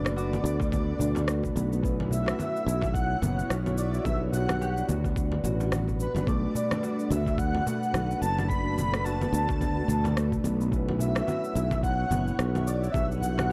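A growly, up-front fretless electric bass with tube saturation and sidechain pumping anchors this earthy, mystical organic downtempo excerpt in B minor at 108 BPM, swung on the 16ths, as an overdriven, thumpy electronic kick joins at 0.6 s beside tape-warm electronic rim clicks, cabasa and congas and a very quiet, crisp metal-shell darbuka. Above them a breathy, flute-like synth lead carries the melody through tremolo, ensemble chorus, analog delay and vibrato, while a thumb-plucked Celtic harp rings out arpeggios through its own analog delay in the background. A blurred, detuned granular cloud pad holds dark sustained chords in its built-in reverb with sidechain pumping, and a felt-muted upright piano adds mellow, intimate accompaniment with audible action noise, all in a dry, gritty hardware recording with light small-room ambience, circling Bm7, F#7sus4/B and Gmaj7/B.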